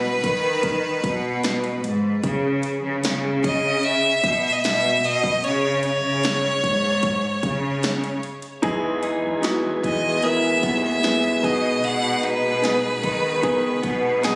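A straight 4/4 pulse at 75 BPM carries this hopeful, emotional pop ballad, an excerpt cut from a longer piece. A single bright violin sings the melody up front with vibrato and a touch of delay, while a lush bowed cello section holds the bass beneath it, smooth and even. From 0.2 seconds an electronic, layered drum kit adds a punchy kick and snare with metallic hi-hats, re-recorded in a large room. At 8.6 seconds the arrangement fills out: a clear, polished baby grand piano takes up the accompaniment, a tonewheel organ with key click sustains chords through a fast rotary speaker in the background, and a clean, direct-recorded electric guitar plays picked, compressed arpeggios with subtle chorus. The harmony moves from B6 and C#5 to Emaj7 and back to B6, and the recording sits in a small room ambience with studio reverb and compression, captured on a phone in the room.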